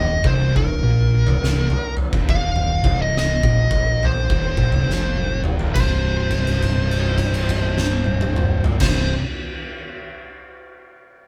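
A moderate small-room reverb wraps this live-in-one-room stoner and doom metal clip, cut from a longer piece, giving it an ominous, sludgy weight. Out front sits an oversized, low-tuned acoustic drum kit with a boomy kick, fat snare, dark cymbals and toms, its gritty, saturated sound pumping in a big room under a loose, swung feel. Two thick fuzz guitars grind out a low riff, one set back in the mix and the other very quiet. A growling fingered electric bass, overdriven and warm, sits in the background. A compressed fuzz lead guitar carries a high melody over a minor chord, and a drum fill at 4.9 seconds leads into a held note that rings from 5.8 seconds over a power chord.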